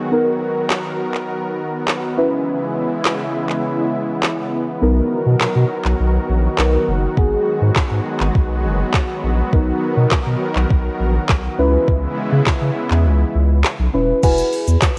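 Euphoric and carefree, this dance-pop excerpt opens on a deep, mellow chord stab with a dark, detuned tone, shaped by chorus, phaser, a filter sweep and a moving notch, alongside a lush supersaw pad of soft-attacked, sustained chords with a long release, both pumping against the sidechain. A smooth R&B drum kit arrives at 0.7 seconds, electronic and up front, with a soft kick, woody snare, metallic hats, handclaps, shaker and crash cymbal, all carrying a tape-warm finish. At 4.8 seconds a thick, saturated sub bass enters, its fast attack and sustained notes sitting prominently in the low end and also pumping with the sidechain. The harmony circles through Bmaj7, C#m7 and G#m7 before moving to Eadd9, and the kick drops out between 13.1 and 14.2 seconds. Light reverb and a digital ambience surround the parts, while the cassette home recording lends the whole a homespun character.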